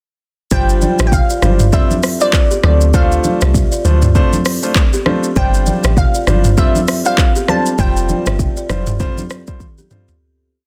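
A dense, heavily limited modern mix with light reverb carries this breezy, sunny afrobeats chorus at 99 BPM, with a swung sixteenth-note feel. Up front, an electronic afro-pop kit lays down a soft, deep kick, smooth hi-hats, syncopated rim clicks, shaker, handclaps and toms, while a round, percussive log drum bass with a dark FM tone bounces through a syncopated line in the low register. A clear baby grand piano supplies polished, syncopated chords over a G7sus4, Dm7 and Fsus2 progression, and a woody, buzzing kalimba with a boxy small-room character and digital delay repeats an interlocking figure doubled in sixths. On top, a glassy, crystalline wavetable pluck with chorus and a filter sweep sings short hook phrases, and bright, thin-skinned congas sit in the background with soft-handed, interlocking patterns. The track fades out from 7.8 seconds, and a drum fill at 9.6 seconds closes it.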